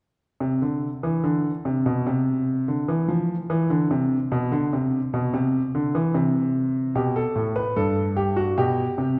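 A wet recital hall reverb with a 1.8-second decay surrounds this short excerpt, placing the listener further back in the room even as the concert grand piano itself sounds present and up front. It is a baroque-style three-part fugue in classical style, played on solo grand piano in 4/4 with a straight feel and a joyful, stately mood. The piano's tone is smooth and vintage, with a deep bass, and its lines span G2 to B4, tuned to A4 = 441 Hz. The piano plays from 0.4 to 9.2 seconds, opening with unaccompanied contrapuntal writing before the harmony settles on G at 7.0 seconds and moves to G over B at 8.6 seconds. Cut from a longer piece, the passage has the poise of a stately fugue carried by the reverberant hall.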